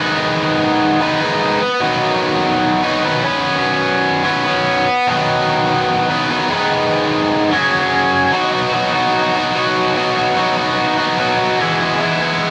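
Rock in B major at 147 BPM, this driving, sunny clip from a longer piece features a single biting, bright overdriven electric guitar, picked and double-tracked up front, playing a solo across G#m, B and F#sus4 chords before moving into a new section at 8.3 s that lands on E, all bathed in wet studio reverb with the live-in-one-room feel and character of cassette tape.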